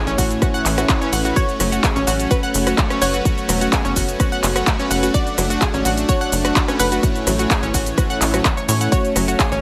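Emotional and driving, this progressive house excerpt moves at 127 BPM in a straight 4/4, set in F# minor, with chords cycling through A, F#m and D/F#. A punchy electronic kick sits up front beside an overdriven deep house kit of handclaps, hi-hat, rim click and shaker, while a tight, nasal sequencer bass built from sawtooth and square waves pumps against the sidechain. A lush, detuned unison pluck carries the melody between B4 and F#5 with a digital delay trailing its notes, and a round, chorused analog pluck spins arpeggios beneath it. A soft, full-bodied supersaw adds sustained stabs coloured by cassette tape and a moving notch, also pumping and delayed. Underneath, a very quiet, warbling vintage pad holds sustained chords, and a light reverb places the whole mix in a modest space.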